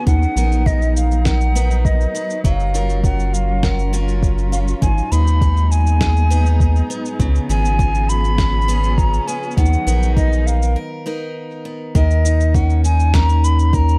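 Folktronica at 101 BPM in B lydian, playful and pastoral, in which a hollow, airy, close-miked flute carries the melody through delay and gritty 12-bit sampler texture over picked steel-string guitar arpeggios, brilliant in tone and full of finger squeak, dark bowed string quartet chords full of vibrato and portamento that drop out at 10.8 seconds, a round, deep analog bass sitting up front, and a soft electronic kick with muffled, pitched-down cabasa and snare, in a dark, warm production cut from a longer piece.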